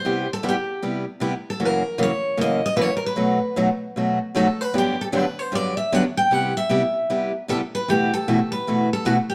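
Jazz excerpt, swinging and fiery, with two up-front picked steel-string acoustic guitars, both bright with fresh strings, one carrying the melody and the other adding finger squeak to its accompaniment over Cmaj7, F#7, B7 and Gmaj7, all in a dark production with moderate studio reverb.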